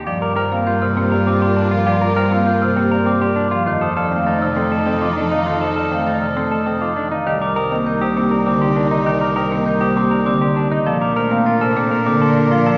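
Hypnotic yet urgent, this excerpt of minimalist classical pattern music moves at 100 BPM in a straight 3/4, tuned slightly below standard pitch to A4 = 437 Hz. A soft-malleted vibraphone carries the melody between G4 and G5 with its motor off, its tone ringing and mellow, while a marimba with medium hard mallets on padauk bars supplies a woody, bright, percussive accompaniment down between C3 and Bb3. A clean, compressed semi-hollow electric guitar plays fingered arpeggios in the middle register, and from 0.2 seconds a glockenspiel struck with rubber mallets adds high, bell-like arpeggios that sound dark and smooth rather than piercing. A chamber string ensemble enters at 0.1 seconds with focused, bowed sustained chords full of vibrato, as a single cello plays an even, bowed bass line. The harmony moves through Gm7, F7, Cm7 and Bbmaj7, all bathed in a wet concert-hall reverb with a 2.3-second decay and a layer of vinyl crackle.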